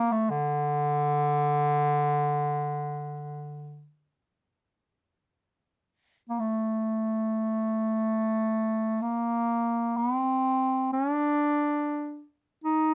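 A solo bass clarinet opens this mournful Caucasian folk excerpt, its clear, present tone placed up front as it sings a longing line in free time between D3 and Eb4. Played in a classical style with light reverb around it, the phrase is stated at the start and then returns at 5.6 seconds, carrying on until the cut at 12.9 seconds.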